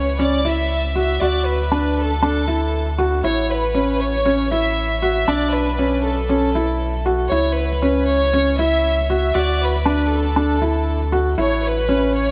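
A felt-muted upright piano, a chamber violin section and a round sine sub bass all begin together in this moving, hypnotic piano-and-strings electronica excerpt at 118 BPM in a straight 4/4. The intimate, mellow piano repeats a delayed riff up front, its action noise audible, while the rich, earthy violins carry the melody with light vibrato over a deep, sustained bass. The harmony moves through C#m, D, A and Bmadd9 to C#m7, then on to D and A, all held in a huge ambient reverb.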